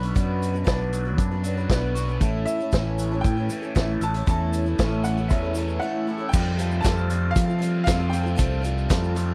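Folk rock with a heartland rock drive, this short, nostalgic excerpt rolls along at 117 BPM in a straight 4/4 with an open-road feel. A bright concert grand piano carries the melody high in its range, touched with slapback echo, while a picked twelve-string acoustic guitar shimmers underneath with a woody, boxy tone from old strings. A raw garage guitar, overdriven and double-tracked with a phaser, plays a riff, and a fingered electric bass sits up front with a warm, amped sound. The vintage drum kit is gritty and saturated, with dark cymbals, a tight kick and a medium-tuned snare. A grainy tube shaker ticks along in the background. The harmony moves from Bm to A, then shifts to Fadd9 at 6.3 seconds for a new section, all captured in a dry, close 1970s-style studio sound.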